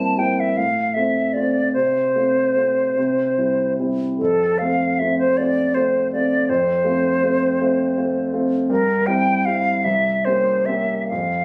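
Lyrical and warm, this romantic classical duo in F major drifts in a rubato 6/8 at roughly 45-55 BPM, counted in dotted quarters. A silver concert flute sings the melody up front with a pure, metallic tone, vibrato and soft attacks, while a concert grand piano supplies a warm, natural accompaniment anchored by deep bass, its harmony moving from C7/G through F and C before settling on C5 at 9.8 seconds. Captured on a phone in the room with light club reverb, the 11.4-second passage is cut from a longer piece.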